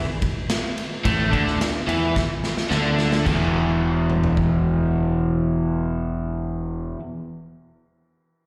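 Rowdy and raw, this short garage rock excerpt drives along at 108 BPM in a straight 4/4, heard as a live gig through the venue's PA with small-room ambience and recital hall reverb. A gritty, saturated drum kit with punchy kick, medium-tuned snare, crash, ride and toms starts at 0.2 seconds and throws in a fill from 2.1 to 3.3 seconds, while a crunchy, double-tracked overdriven guitar riff with slapback echo enters at 1.0 seconds over a picked electric bass thickened by tube saturation. The chords move from A5 to E5 at 3.3 seconds, with drums and guitar sitting up front.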